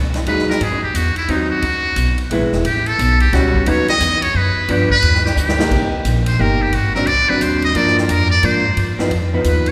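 Late-night and cool, this swinging small-group jazz waltz puts a buzzy, brilliant metal-muted trumpet solo with light vibrato up front, over woody pizzicato upright bass, dark, clean hollow-body electric guitar accompaniment and a natural-sounding drum kit of boomy kick, snare, hi-hat, ride and crash that plays a brief fill at 5.4 seconds, all heard in a reverberant church acoustic.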